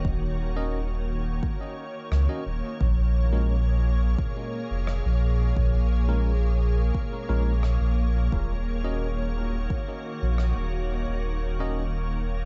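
A round, sine-like sub bass sits up front in this meditative ambient dub passage at 87 BPM in 4/4, holding sustained tones with a fast attack beneath a chord movement from Ebm7 to Bbm7 and back in Eb minor. Behind it, a soft, organ-like pad holds calm, detuned chords with a slow attack and long release, its pure, vintage tone warbling through an ensemble chorus and its own built-in reverb. A bell-like tine electric piano drops clean, direct stabs that trail off in dub echo, while a deep, layered electronic kick with a tape-warm weight grounds the groove until 9.8 seconds. An acoustic rim click, set back in a big room, enters at 2.1 seconds and also carries a dub echo. The overall production is dark and warm, with vinyl crackle and a rolled-off top end, and the passage is cut from a longer piece.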